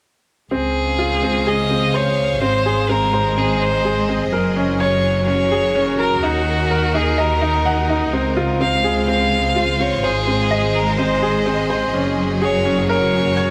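Bathed in a huge ambient reverb with a 5.2-second tail, this melancholic, intimate electronica excerpt moves at 126 BPM in a straight 4/4 through Dbmaj7, Ab, Gbadd9 and Ebm. Up front, a boxy, short-sustain grand piano riff runs through a low-pass filter and delay, beside a focused solo violin melody carrying its own delay and vibrato. A clear studio string section holds bowed chords, while a lush, expressive double bass section anchors the low end, all four parts playing from 0.5 to 13.5 seconds.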